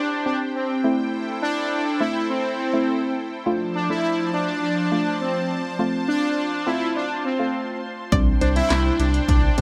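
A bold, brassy analog synth lead carries the melody up front in this nocturnal, melancholic synth-pop fragment at 103 BPM in A minor, with chorus and delay on its fat, detuned tone. A lush, detuned unison pad holds sustained chords while a soft, round pluck adds gentle accompaniment through a Csus2, Am7, Dm7, F progression. At 8.1 s a punchy analog drum machine with handclaps, hi-hat, kick and snare arrives, joined by a smooth, gliding synth bass and a brief, full-bodied analog pluck second line with delay, all set in moderate studio ambience.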